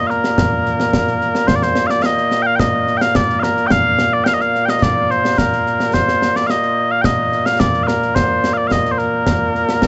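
A light reverb gives this short cut from a longer piece of Scottish pipe music a soft ambience, and its top end is rolled off, with nothing above 7.9 kHz. Set in Bb major at 108 BPM in a straight 4/4, the tune feels ceremonial and proud. Mellow small bagpipes carry the melody from the first moment, sweet and continuous with vibrato, sitting up front as a solo voice across a range from Bb2 to G5. Concert snare drum and concert bass drum join at 0.1 seconds, acoustic and up front, with dark cymbals and the close sound of a small room. The pipes stay louder than the drums throughout, and the single strain repeats after a brief opening phrase, running on to the cut at 9.9 seconds.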